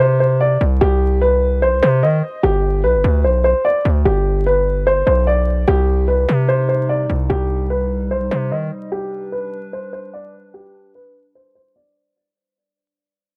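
A dry, gritty recording with vinyl crackle and studio reverb carries this brooding, menacing hip hop and trap excerpt at 148 BPM in half-time C harmonic minor, where a dark, boxy concert grand piano melody and a saturated, aggressive distorted 808-style bass open together, the bass stopping at 8.7 s while a warbling, nostalgic tape-like pad of sustained chords enters at 6.3 s as a filter sweep and fade-out take hold from 5.7 s.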